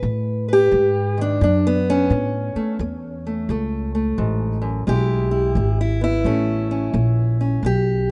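A boxy, fingerpicked parlour-style steel-string acoustic guitar with fresh strings carries the melody up front, joined throughout by a woody, thumpy pizzicato upright bass, in a soulful, gritty acoustic country blues fragment cut from a longer piece. It moves at 87 BPM in 4/4 with a swung eighth-note feel, passing through B, A and E before returning to A at 6.3 seconds. Light reverb and studio ambience surround a rough home-demo mix with a dulled top end.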